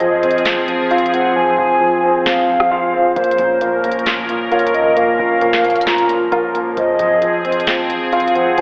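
This menacing, dark trap cut from a longer hip hop piece moves at 133 BPM in a half-time 4/4 feel in Bb minor, drifting from Fm to Bbm at 3.2 s and back to Fm. A hollow, woody clarinet-like synth lead with chorus, analog delay and vibrato carries a second line over a shadowy, intimate baby grand with audible action noise, while a detuned sawtooth pad with ring modulation and a filter swell holds sustained chords. A worn, slightly out-of-tune tine electric piano plays arpeggios through analog delay, a punchy, tight 808-style bass sits in the background, and a crisp trap kit with a sharp snare and rim clicks drops its hi-hats from 1.4 to 3.2 s, all within a dreamy, reverb-soaked mix with a telephone tone.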